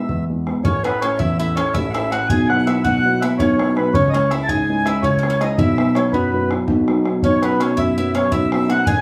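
Celtic folk in the form of a slip jig, this cheerful, rollicking excerpt moves at 110 BPM in 9/8 with a straight feel. A reedy, full-bodied accordion carries the melody from the start, while a dark, mellow grand piano sits up front with a low accompaniment reaching down to A1. An open, boomy bodhran with a vintage, band-limited character joins almost at once, adding acoustic percussion beneath. By 0.6 seconds a bright, picked bowl-back mandolin with double strings adds a quiet second line, and at 0.7 seconds a breathy silver flute with a tongued, straight tone follows very softly as another second line. The harmony starts on E, moves through A, Esus2/B and C#m, and settles on B-based suspensions toward the end, all set back in a wet studio reverb that places the group further back in the room.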